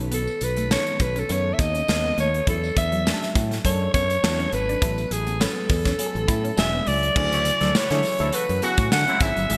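A growling alto saxophone carries the melody up front, its tone breathy, raspy and gritty with vibrato, in this upbeat, breezy slice of polished 1980s jazz-funk pop at 102 BPM with a light sixteenth-note swing. Beneath it, a bright, growly fingered electric bass and a modern studio drum kit drive the groove, the kit airy and up front with a tight kick, medium-tuned snare, hi-hat, crash cymbal and gated reverb. In the background, a glassy FM electric piano with a bell-like attack, phaser and subtle chorus supplies accompaniment, while a dark, clean electric guitar with subtle chorus plays a riff and a jingly tambourine sits very quietly in the mix. The harmony moves through lush extended chords such as B9, E13sus4 and A69, shifting to Dmaj9#11 at 7.2 seconds, where a distant, roomy horn section enters as a second line from 7.3 seconds. A lush hall reverb and bright digital production give the whole excerpt a glossy sheen.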